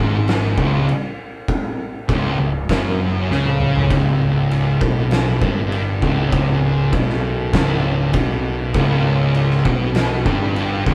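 A thick, distorted fuzz guitar riff sits up front in this hypnotic, ominous stoner and doom metal passage at 99 BPM in 4/4, joined by a darker fuzz guitar in the background that drops out between 3.9 and 8.8 seconds. A growly, punchy overdriven fingered bass holds the low end, while an oversized low-tuned acoustic drum kit with a fat snare, saturated gritty tone and rolled-off top plays kick, snare, toms and crash, with a fill at 3.3 seconds leading into the second section. The band plays live in one room, framed by a moderate large studio reverb, in a clip cut from a longer piece.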